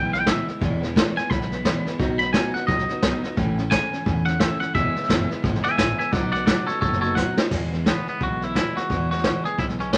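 Rollicking, rowdy rockabilly swings along in this excerpt, with a bright, twangy clean electric guitar soloing up front over a picked dreadnought acoustic guitar, a woody, thumpy pizzicato upright bass on gut strings, and a brushed drum kit with dark cymbals and a boomy kick, whose fill at 7.2 seconds leads into a new section at 7.5 seconds, all set in a moderate studio reverb.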